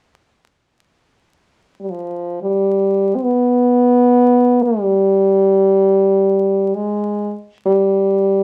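A solo French horn, warm and up front with a smooth top, carries a solemn, mournful Caucasian folk melody in free time and classical style, entering at 1.8 seconds in this brief cut from a longer piece, set in a wet studio ambience with a vinyl crackle.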